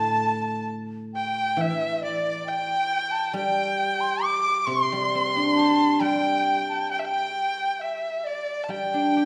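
A straight 4/4 pulse at 68 BPM carries this festive, pastoral Chinese chamber piece in the G zhi mode, cut from a longer work and running 9.3 seconds. An up-front, earthy erhu sings the melody with light vibrato and portamento, while a mellow bamboo dizi with a buzzing membrane and an airy, soft attack shares the same high register as a second line. Beneath them, a ringing, silvery guzheng played with fingerpicks sits up front in the lower range, all set in a wet recital-hall reverb.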